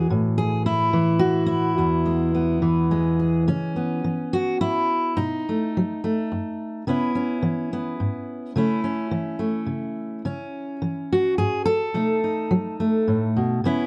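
A fingerpicked steel-string dreadnought guitar plays alone from the first moment in a peaceful folk piece at 106 BPM in 3/4 with a straight feel, its full-bodied, up-front tone caught by close, detailed microphones in a nearly dry room as it moves from A5 and E into a passage from 3.5 seconds built on C#m7, B7, A/C# and C#m, ranging from E2 to A4 in this short cut from a longer work.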